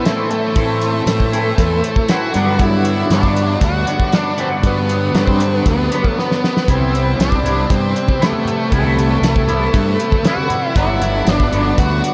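A straight 4/4 groove from a cloth-damped, thuddy drum kit with a fat snare drives this dark, hypnotic psychedelic rock excerpt, where an overdriven, round fingered bass and a twangy, phased, double-tracked electric guitar riff sit beneath an up-front octave-fuzz lead melody steeped in diffuse delay, while a very quiet, gritty tonewheel organ with slow rotary holds sustained chords, low-tuned congas played with hard hands slip in at 6.8 s just after a drum fill, and the harmony moves from Am through Gmaj7 to Cmaj7 in a dreamy mix soaked in huge reverb.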